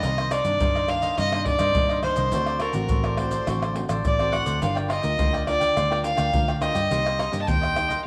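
A smooth, bowed fiddle sits up front with light vibrato, carrying a yearning, bittersweet melody through this short samba and choro passage at 105 BPM in 4/4. Beneath it, a crisp picked cavaquinho and a fingerpicked classical nylon-string guitar supply accompaniment, while a bright, amped, foam-muted electric bass anchors the low end over the Cm9, D7, Gm7 and Cm7 changes. Maracas, a tight surdo, pandeiro and tamborim, played with soft hands and miked close, round out the groove, and a wet echo-chamber reverb gives the sound a roomy glow.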